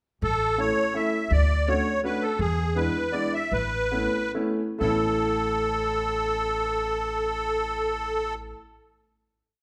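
Charming and whirling, this brief musette waltz puts a reedy, shimmering accordion close and up front, spinning a motif-based melody in period phrases over clear, open upright piano chords on the backbeat and a dark, thumpy pizzicato upright bass on gut strings playing root and fifth on the main beats, slowing from 2.4 seconds before landing on a final chord at 4.8 seconds within a moderate recital hall reverb.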